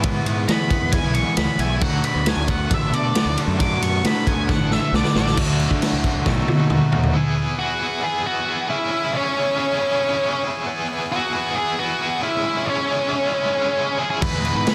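Indie rock at 136 BPM, wistful yet carefree, where a dark, fuzz-laden lead guitar with digital delay carries the melody up front from 0.5 seconds, soloing over a biting tremolo guitar riff, a compressed overdriven rhythm guitar in the background, growling overdriven fingered bass and a raw, boomy, saturated garage drum kit with fills, until bass, drums and the rhythm guitar drop out at 7.1 seconds for an E major stretch moving between Eadd9 and C#m, leaving the lead, the biting guitar and a very quiet, lush, airy detuned pad to sustain chords before the band comes back in at 14.2 seconds.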